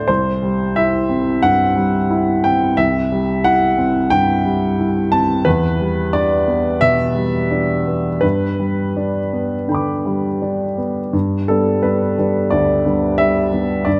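Bathed in a moderate concert-hall reverb, this tender, intimate fragment of neoclassical minimalist piano features a woody, up-front upright piano with long sustain, playing alone in an unhurried rubato 4/4 across C, Em7 and G chords before shifting into a new section at 11.1 seconds.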